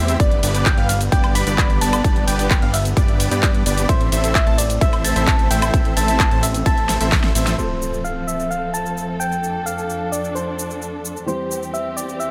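A punchy electronic kick drum sits up front in this anthemic, euphoric festival progressive house passage, which is cut from a longer piece, and drives the drop from 0.2 s until it stops at 7.2 s. Around it, a big-room dance kit plays throughout, with an overdriven, huge snare alongside handclaps, hi-hat, ride cymbal, shaker and woodblock. A fat, saturated analog bass, a thick, detuned supersaw riff under a low-pass filter, and a catchy plucky unison lead with tape colour and dub echo all pump against the sidechain. A round, gentle FM synth lead carries the melody with chorus and echo, floating over a lush, bowed symphonic string section that holds dark sustained chords. After a drum fill and a band accent, the passage at 7.6 s lets go of the bass, supersaw and pluck, and brings in a boxy, mellow grand piano and an electronic impact as the chords move to F and then C/E. Light reverb and digital ambience give the whole passage a polished sheen.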